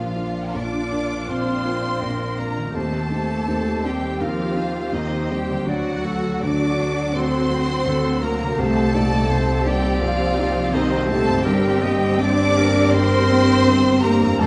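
Heard through a moderate scoring-stage reverb with a softened top end, this cinematic passage unfolds in a tender, moving rubato. A lush violin section carries the expressive melody high in its register, while a second violin section plays a smooth, even line in the background alongside a focused viola section. A felt-muted upright piano adds mellow, intimate accompaniment with audible action noise, a dark French horn section holds soft-attack sustained chords, and a very quiet concert harp rings out fingerpicked arpeggios. Cello and double bass sections anchor the low end with bowed ensemble tone, the basses shaded by light vibrato. Hard-mallet timpani on calf heads sound very quietly only through the opening 0.9 seconds, and a bright solo clarinet enters at 1.3 seconds with a classical second line.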